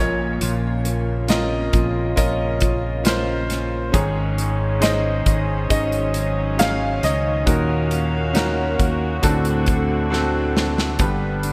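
From the start of this excerpt, a clear concert grand piano carries a high melody with a long sustain, shimmering through analog chorus and digital delay, while a second piano part with a deep bass and short sustain supplies the polished accompaniment beneath it. Soft-attack bowed strings float in the background, a very quiet woody, full-bodied steel-string acoustic guitar picks arpeggios, and a fingered electric bass sits direct and up front. At 0.4 seconds a modern studio drum kit joins with hi-hat, a punchy kick and a medium-tuned snare, all dressed in gated reverb. The piano melody stops at 7.9 seconds, leaving the accompaniment to carry the longing, emotional pop ballad as the harmony moves from Bbmadd9 through Absus4 and Ebm7 to D7, landing on G. A drum fill from 10.1 to 11.0 seconds closes the passage, and the whole mix has a bright 1980s-style digital sheen bathed in a moderate plate reverb.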